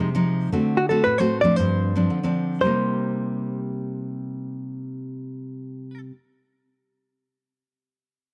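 A dark, clean, compressed hollow-body jazz guitar carries the fingered melody up front in this lively, bittersweet samba excerpt in C minor at 114 BPM, paired from the start with a full-bodied, deep classical nylon-string guitar fingerpicking the accompaniment, both caught in a dry, close 1970s-style small-room sound that moves from Fm7/C through D7 and G7sus4 to settle on Cm7 at 2.6 seconds.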